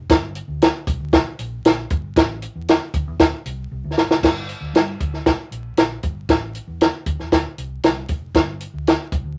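A straight 4/4 pulse at 116 BPM drives this urgent, passionate stretch of uptempo 1960s-style soul in G dorian, where a dry, up-front compact cocktail drum kit with dark cymbals, a high-tuned snare and a tight kick plays alongside a round, punchy, foam-muted vintage fingered electric bass, and a drum fill at 3.7 s leads into a new section at 4.2 s, heard in a small room with a touch of vinyl crackle.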